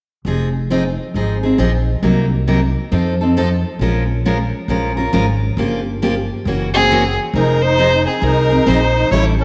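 A rich, boxy bowed violin with focused vibrato steps up front at 6.7 s beside a reedy, shimmering musette accordion second line, crowning this bittersweet, virtuosic jazz manouche fragment in F minor at 136 BPM with a swung feel. A picked dreadnought guitar sits forward in the accompaniment over a woody pizzicato upright bass, the whole scene set in a wet echo-chamber reverb and small room ambience.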